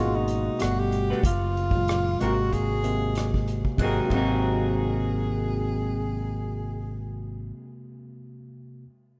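Swung sixteenths at 94 BPM in 4/4 carry this introspective, late-night neo-soul R&B fragment: an up-front acoustic kit with dark cymbals, punchy kick, bundle sticks and rim click plays from 0.3 to 4.3 s beside a warm, amped fretless bass, while a bright, barky, lightly overdriven tine electric piano accompanies through G#m9, Gmaj9, F#maj9 and G#9, a twangy, slightly broken-up picked guitar with spring reverb adds a second line from 1.1 s, and a close-miked tenor saxophone with soft attack, vibrato and slapback echo takes a jazz-style solo melody, set in a lush hall within a rough home demo mix.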